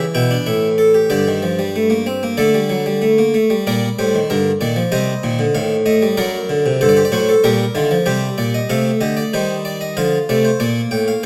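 A single French-style harpsichord, close-miked and up front with a round, plucked tone, plays a joyful, elegant four-voice fugue in a baroque classical style, spanning F#2 to G5 in a straight 4/4. The opening material returns at 8.7 seconds after a contrasting middle passage that begins at 3.7 seconds, with the harmony moving through minor and suspended chords. Detailed close microphones capture the instrument within a moderate recital hall reverb, and the fragment is cut from a longer piece.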